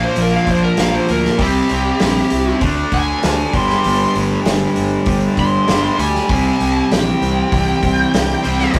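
A high-gain lead guitar solo opens this short excerpt of quiet-loud alternative rock, its bright, distorted melody ranging between G4 and C6 over a straight 98 BPM pulse in 4/4 with an anthemic, bittersweet mood. Beneath it, an up-front overdriven electric guitar plays a picked riff. A clean, compressed twelve-string electric guitar shimmers with arpeggios in the background, and a round, fuzzy fingered bass is overdriven underneath. A loose, distant drum kit enters at 0.2 seconds with a punchy kick, medium-tuned snare and hi-hat, its top end rolled off in a roomy space. The harmony moves through Bb, C, D5 and Gsus2 before returning to C, and a thick fuzz guitar riff appears only briefly at 8.7 seconds as the clip ends, all captured with a rough rehearsal-room feel, tube saturation and a small room's moderate reverb.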